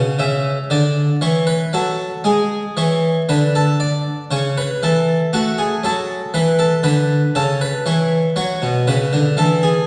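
A brilliant, full-bodied Italian-style harpsichord with octave strings plays alone and up front, close-miked and plucked, in a radiant, flowing baroque-style suite movement at 59 BPM in 4/4, taken freely with rubato and tuned to A4 = 439 Hz. Its range runs from B2 to E5 through a short harmonic passage of Bm11/C#, Bm13 at 2.3 seconds, A/C# and a closing F#5 at 8.4 seconds. A wet recital-hall reverb and a vinyl crackle surround this brief 9.9-second fragment of a longer piece.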